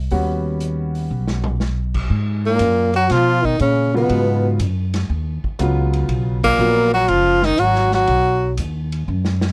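A dry, close sound frames this short excerpt of cool, hypnotic modal jazz in G# dorian, swinging at 120 BPM in 4/4. Pizzicato upright bass with steel strings sits up front, woody and warm, while a vintage drum kit in a small, pumping room adds dark cymbals, a punchy kick, a medium-tuned snare and toms, with a drum fill at 1.1 seconds. A clear, intimate baby grand piano comps from the start with long sustain and audible action noise, moving from an Eb7alt to a G#m9 as the second section begins. At 2.5 seconds a tenor saxophone takes the melody with a soft attack, vibrato and scooped notes, warm and up front, joined by a bright, forceful trombone playing a second line with light vibrato. A band accent lands at 6.3 seconds, and the drums close on another fill before the cut.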